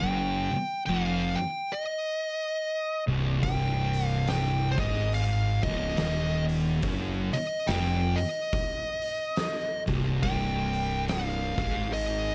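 A lightly reverberant, sludgy stoner and doom metal excerpt crawls at 71 BPM in C minor with a swung, brooding feel, resting on a single C minor chord throughout. Two thick fuzz guitars, one dark and one warm, grind out a low picked riff in the background. A growly, overdriven fingered bass adds punch beneath them, while a compressed, up-front fuzz lead guitar carries the melody with a slapback echo. At 3.4 s an oversized, low-tuned acoustic drum kit joins with a fat snare, a punchy kick and hi-hat, its gritty, saturated sound set in a bright stone room.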